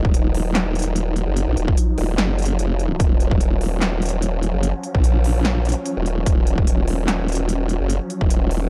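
A menacing, heavy wobble dubstep excerpt in Eb minor at 147 BPM with a swung, half-time feel opens on an Ebmadd9 chord, as a saturated, up-front formant-sweep wobble bass with chorus and overdrive sits low beneath a punchy, overdriven electronic kick, while a big-room dance drum kit adds snare, crisp hi-hat and handclaps and huge, detuned supersaw chords with phaser, low-pass filtering and sidechain pumping hover lush in the background of a dark, lightly reverberant mix.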